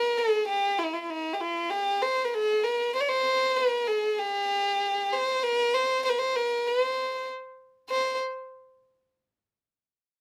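A single bowed violin opens this short fragment of festive, passionate Arabic music, carrying the melody up front in an intimate, close sound with light vibrato, a soft attack and an airy, sul tasto tone. The straight 4/4 feel sits in light reverb, and the violin's line stops at 8.2 seconds, just after a new section begins at 7.9 seconds.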